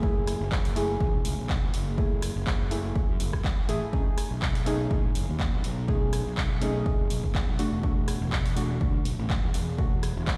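A deep, mellow chord stab carries this smooth deep house excerpt at 123 BPM in F# minor, its soft, lush chorus, sidechain pumping and dub echo moving through F#m9, B13 and E9sus4, while a punchy electronic kick and a dark, round, overdriven fingered electric bass sit up front from the start, the bass with its own pumping. From 0.3 seconds a punchy analog drum machine adds handclaps, hi-hat and rim clicks over a gentle 16th-note swing. The whole thing sounds as if played on a big sound system in a bare stone room, its reverb lending the drums a large-room echo.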